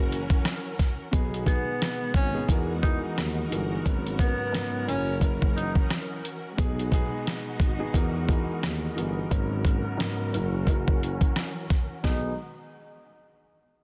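Warm and nostalgic, this boom-bap hip-hop excerpt moves at 88 BPM in 4/4 with a swung sixteenth-note feel, settled in B major. A dusty, sampler-style drum kit sits up front, with a thumpy kick, a fat snare, rim clicks and hi-hat, all gritty and compressed. Underneath, a mellow tuba carries the bass line with jazz-style vibrato. A dark concert grand piano plays vintage-toned accompaniment, its action noise audible and its tone softened by cassette-tape colour and a low-pass filter, while a bowed studio string section holds smooth, expressive chords with portamento. A breathy tenor saxophone enters at 1.5 seconds with a whispered, subtoned jazz melody full of scooped notes, sounding distant through tape echo, drops out at 5.7 seconds, and returns at 12.0 seconds as a filter sweep ends. Chords such as Emaj9#11, G#m11 and F#7 circle back to B6, and the mix is a dense, heavily limited modern master bathed in studio reverb.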